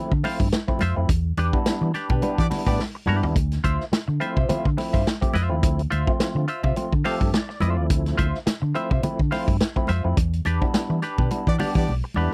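A percussive tonewheel organ opens this sly, cool funk excerpt on a rootless Dm9, its lightly overdriven stabs carrying key click and chorus vibrato, before a vintage drum kit and a dark, round, foam-muted fingered electric bass join almost at once. The groove sits at 106 BPM in 4/4 with a gentle sixteenth-note swing in D dorian, moving between Dm9 and Em7, and the kit comes across up front with a punchy kick, a medium-tuned snare and a rolled-off top across hi-hat and toms. A bright, twangy clean electric guitar adds compressed, picked accompaniment through a wah, while congas with hard hands and a thin skin sit damped and close in the background. Band accents and drum fills mark the opening and closing stretches, with a tight horn section punching in briefly around 2.4 seconds and again near the end with octave doubling and vibrato, and the organ takes a short fill at 6.8 seconds. The sound is a dry, close 1970s-style studio recording with little room around it.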